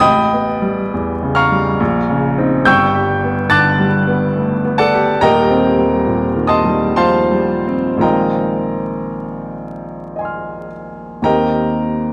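Luminous and hazy, this impressionist classical fragment for solo piano drifts in a rubato 3/4 at 53-72 BPM, its clear, intimate baby grand sitting up front with audible action noise and long sustain across a span from Eb1 to A6, wrapped in wet recital hall reverb and vinyl crackle as lush extended chords settle into Eb major from 5.2 s.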